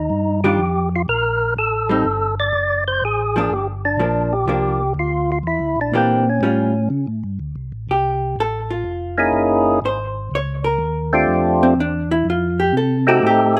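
A fat, lightly overdriven, percussive tonewheel organ carries the melody from the first moment through a slow rotary speaker and slapback echo, while a second, round and dark tonewheel organ holds down the bass with chorus vibrato, setting a smoky, soulful soul jazz organ trio groove in swung 4/4. A clean, picked, compressed hollow-body jazz guitar with its own slapback echo joins as accompaniment at 0.4 s, then takes a solo from 7.4 s over chords such as Dm7, F#13 and F69. Recorded outdoors with little reverb, this excerpt is cut from a longer piece.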